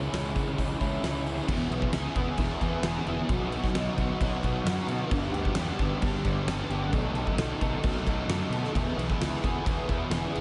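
From the first beat, an up-front, overdriven semi-hollow guitar with an ensemble chorus plays a double-tracked, picked riff over a growly, fuzz-soaked fingered bass sitting in the background, joined at 0.1 s by a huge arena drum kit with a punchy kick, fat snare and bright crash and hi-hat, all bathed in an 8-second ambient reverb for a wistful, blissful shoegaze and dream-pop rock passage that moves from C#m through E, B, G and B7, cut from a longer piece.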